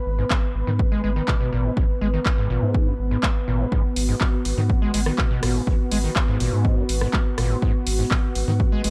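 This gritty, raw acid house excerpt rides a single G#m7 chord. A smooth, detuned sawtooth pad holds sustained chords with chorus, and a round, deep analog bass sits beneath it, both breathing with sidechain pumping. A squelchy, resonant acid bass riff enters at 0.2 seconds, with a tube-saturated filter sweep and lush chorus. A punchy, tape-warm electronic kick sits up front from 0.3 seconds, joined by an analog drum machine playing handclaps, hi-hat and rim click, all inside a dark digital ambience.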